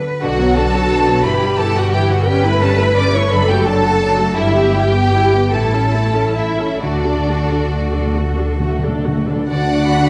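A distant, smooth violin section carries the elegiac, yearning melody high above this slow, rubato classical passage in 6/8 and D major, moving at roughly 41-59 BPM. Beneath it, a close, expressive second violin line, a lush viola section with soft attack and portamento, a focused cello section and a dark, woody double bass section fill out the harmony, while a fingerpicked concert harp rings in the background with arpeggios through chords that travel from Bm toward D. Dry timpani played with medium mallets add a fill from 6.8 s, a tuba joins in the background at 9.5 s, and the ensemble sits in moderate concert hall reverb in this fragment cut from a longer piece.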